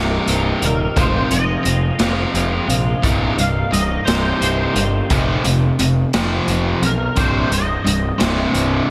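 A round fuzz bass up front and a 6/8 pulse from a raw garage drum kit, with a boomy kick and gritty, pumping room sound, drive this brooding, dark stretch of quiet-loud alternative rock cut from a longer piece, the bass sounding from the start and the drums joining at 0.3 s. A scooped distorted guitar riff and a chorused, echoing twelve-string arpeggio in the background open the passage, while a clean, twangy lead guitar carries a solo melody from 0.7 s. At 5.1 s the twelve-string stops and a cranked stack guitar takes up the riff with spring reverb and slapback, all set in a lush hall that gives an arena-sized sound.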